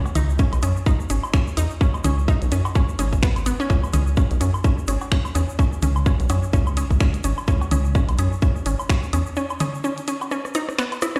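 Heard through a big sound system in a bare stone room, this cut from a longer minimal techno track moves at 127 BPM in C# minor with a 16th-note swing, its mood clinical and quirky. A tight, up-front electronic kick and a rubbery, hollow square bass with tube saturation and sidechain pumping anchor the groove. Around them, a minimal click kit of finger snaps, hi-hat and rim click, a grainy tube shaker, analog cowbell, toms and woodblock with dub echo, and a squelchy, resonant blip pluck riff with chorus, dub echo and pumping all play. The kick and bass drop out by 9.2 seconds for a break, and a drum fill arrives at 10.3 seconds.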